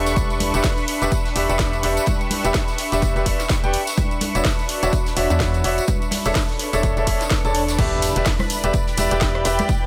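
A swung 126 BPM pulse in 4/4 drives this soulful, energetic slice of piano house in E dorian, anchored by a punchy, tape-warm electronic kick sitting up front. A layered house kit adds a cracking snare, hi-hat, rim click and crash, while a very quiet, roomy soul kit and close, dry tambourine and congas fill out the groove. A clear, woody upright piano carries the riff with digital delay, riding over a hollow, organ-like FM bass that is dark and percussive with a fast attack and a decaying tail. Above them, a silky, detuned sawtooth string pad with ensemble chorus holds sustained chords, and a dark, bowed studio string section adds an intimate sul tasto texture with light vibrato, with pad, piano, bass and strings all pumping to the sidechain. The harmony moves from Em7 through Dmaj9/E and Bm11/E, returning to Em7 as a drop arrives at 7.8 seconds, marked by a very quiet electronic impact, all set in a light small-room reverb in this clip from a longer track.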